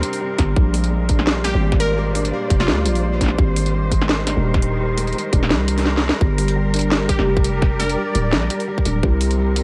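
A half-time drum and bass groove at 170 BPM in 4/4 drives this dark, tense excerpt, swung lightly on the sixteenths. Up front, the tight electronic kick and a layered kit with a cracking snare and metallic hats sound re-recorded in a small room. A growling, buzzy 808-style bass anchors the low end, while a lush, distant cello section holds bowed, vibrato-rich chords that pump against the sidechain. A soft, felt-muted upright piano spins intimate arpeggios through a delay, and from 1.4 seconds a glassy, detuned wavetable pluck carries a short, bright melody with chorus and delay. The harmony in G phrygian moves from C7(no3) through Bbadd9 and Abadd9 to Gm. The kick drops out at 5.5 seconds and a drum fill at 5.9 seconds leads into the returning section, all set in light reverb.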